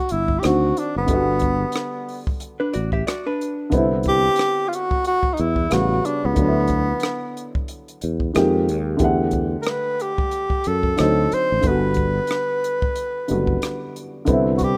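A breathy tenor saxophone with light vibrato and a slapback echo carries the melody up front in this soulful, smooth neo-soul R&B excerpt, over a dark, woody upright piano, a growly fretless electric bass, and a compact cocktail drum kit with a punchy kick and rim clicks, while a clean, hollow-body jazz guitar adds a brief second line from 2.6 to 3.7 seconds, all in the small-room ambience of a rough home demo mix.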